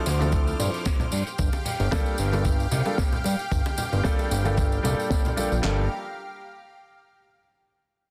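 Cosmic and sensual, this short nu-disco excerpt moves at 113 BPM in 4/4 with a light 16th-note swing, set in G dorian over a Dm7 to Gm7 change. A fat, saturated analog bass sits up front in a low register, its detuned sawtooth and square tones sounding thick, nasal and evolving, and it pumps against the sidechain. Above it, a lush unison pad holds bright, chorused chords with a slow attack and long release, also pumping. A present, polished grand piano plays accompaniment with a slapback echo. The rhythm comes from a gritty, tape-toned sampler-style kit up front, with a thumpy kick, handclaps and a medium-tuned snare, while a tight acoustic funk kit with hi-hat, shaker and a high-tuned snare stays in the background under a filter sweep. Ringing tambourine, congas and bongos played with hard hands add to the groove in a small room ambience with light reverb, all within a dense, heavily limited modern master.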